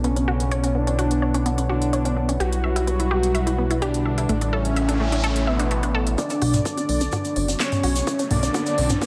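Driving and hypnotic, this melodic techno excerpt in B minor at 127 BPM layers a fat, detuned analog lead with phaser and dub echo over a thick, tube-saturated sawtooth bass, lush, warbling unison pluck arpeggios under filter sweeps, crisp house-kit handclaps, hi-hat and toms, a smooth, very quiet analog pad and a deep, moody ambient pad, with a background noise sweep and riser entering at 4.6 s before a soft supersaw second line through cassette tape and low-pass filter, a punchy electronic kick and a grainy egg shaker join at 6.2 s as the build-up climbs in an echo-heavy chamber-reverb mix.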